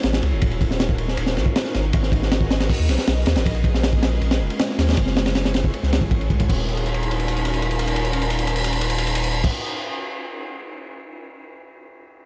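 A crunchy, up-front breakbeat kit with a punchy kick, high-tuned snare and dark cymbals drives this nostalgic, raw drum and bass excerpt at 158 BPM in Eb minor, over a thick, saturated sub bass and a faint, ethereal pad whose detuned, warbling chords carry ensemble chorus, built-in reverb and vintage 12-bit sampler grit through Ebm9, Abm9, Bbm9 and Gbm9, before a drum fill from 6.7 seconds leaves the kit playing alone from 9.5 to 11.0 seconds in a dry, small-room sound.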